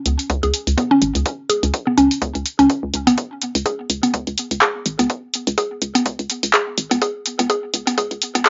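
A hollow, knocking FM bass with tube saturation and sidechain pumping opens this clinical, quirky minimal techno excerpt at 125 BPM alongside up-front, tape-warm analog drum machine handclaps and hi-hats swung on the 16ths, joined at 0.3 s by a punchy electronic kick and at 0.4 s by a woody, round, mallet-like synth pluck riff with chorus and tape echo, all building under a continuous filter sweep inside a small, wet room with a dulled top end.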